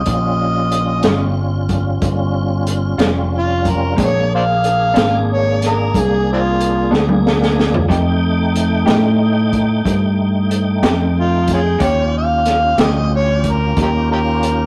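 Slow blues in a swaggering, rollicking 12/8 groove, with a gritty overdriven harmonica taking the up-front solo lead with scooped notes and tongue slaps over slow-rotary tonewheel organ chords, a round and punchy fingered bass, a crunchy breakbeat kit with a high-tuned snare and a fill at 6.9 seconds, and a slightly broken-up tremolo guitar tucked in the background, all captured in a rough rehearsal-room sound with light reverb.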